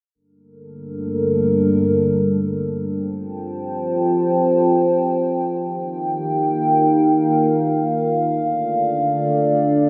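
In this mechanical, aggressive drum and bass excerpt in free time and G minor, a dark analog pad of detuned square, sawtooth and triangle waves with a sub octave enters at 0.8 s, shaped by a filter sweep, its slow attack and long release holding up-front, moody chords from Gm through F and Eb to Dm, colored by chorus and phaser within a lush hall reverb and a dense, heavily limited modern master.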